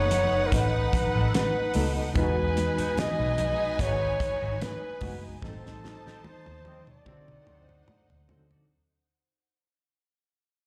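Heard as a live gig through a club PA with light reverb, this fading excerpt of lush 1970s-style soul at 73 BPM feels bittersweet and silky: a close-miked flugelhorn with vibrato carries the melody over a focused, bowed string section, a barky, lightly overdriven electric piano with fast tremolo, a dark, foam-muted bass, a twangy lo-fi guitar riff with wah in the background, a damped drum kit with a fat snare, and ringing, high-tuned congas, before a drum fill and band accent arrive at 5.4 seconds and a brilliant trombone section stabs briefly from 6.7 seconds.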